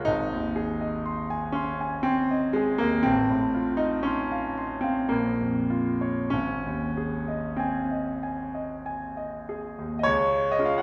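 A polished concert grand piano with a deep bass carries this tender, nostalgic romantic nocturne alone from 0.0 to 10.8 seconds, ranging from Ab1 to C6. The 3/4 pulse moves slowly, between 47 and 62 BPM, with a free rubato feel as the harmony passes from Ab through F7/A and Bbm, back to Ab and on to Db. A wet recital hall reverb places the listener further back in the room, while the piano's clear tone stays present in this excerpt cut from a longer piece.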